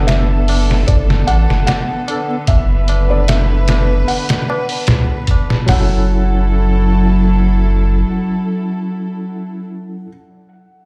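A big, reverberant room sound surrounds this short trip hop passage, as if it were played through a large system in a bare space. The mood is dark and hypnotic at a slow 75 BPM in F# minor, with a lightly swung 16th-note feel. A sampler-style drum kit sits up front, compressed, pitched down and muffled, with a thumpy kick and a medium-tuned snare that sound re-recorded in a small room, while a high-tuned, ringing tabla stays close and dry in the background. Beneath them a round analog bass, deep and mellow with a fast attack and an evolving wave-folded tone, holds the low end until 8.0 s. A bright, barky tine electric piano plays accompaniment through a combo amp with tremolo, gritty 12-bit sampler character and tape echo, as a bowed chamber string section sustains soft, sul tasto chords with light vibrato. On top, a felt-muted upright piano carries a hushed, intimate melody with audible action noise and tape echo, as the harmony moves from Bm7/F# to F#m7 at 5.7 s and the drums drop out at 5.9 s.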